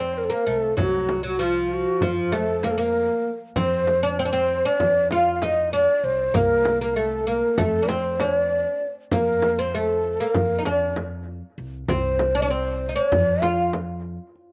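A longing, soulful Turkish makam ensemble piece in 9/8, cut from a longer work, where a breathy, mellow ney carries the melody up front with a soft attack and vibrato. Also up front, a bright, woody fretless oud plays a plectrum-plucked second line on double strings, touched by a slapback echo, while a growly steel-strung upright bass holds the low end in pizzicato. A very quiet clay-shell darbuka enters at 0.2 seconds and a deep, dry frame drum at 0.8 seconds, both played with soft hands, in an outdoor recording with little reverb.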